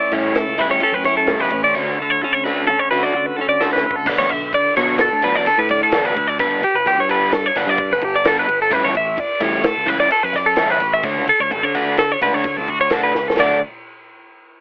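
Intricate and playful, this math rock and midwest emo fragment moves in a straight 5/4 at 129 BPM in D major, with a bright, twangy twelve-string electric guitar up front spinning arpeggios over a double-tracked, crunchy overdriven riff, a compressed clean electric guitar with harmonic tremolo that stops at 6.4 seconds, a growling fingered electric bass with overdrive, and a dry compact cocktail drum kit in the background with a high-tuned snare and dark cymbals, its fills at 3.6 and 13.2 seconds, all heard through light reverb and the warbling pitch drift and telephone-like tone of worn old cassette tape as chords pass from A9 through Dmaj7, Bm9 and Gadd9 to a closing D.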